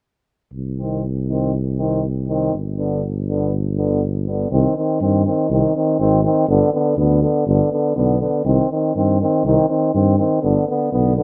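A steady, straight two-beat pulse drives this short cut from a longer Balkan brass band piece, bittersweet yet fiery as it sways between minor and dominant harmony. A dark, smooth-topped tuba with light vibrato holds the bass up front from 0.5 seconds, joined at 0.8 seconds by two classical-style euphoniums on plate reverb: one clear, distant and lightly vibrato-tinged, the other warm and forward. The moderate studio room and rough home-demo mix give the trio a roomy, unpolished character as the opening passage gives way to a second one at 4.5 seconds.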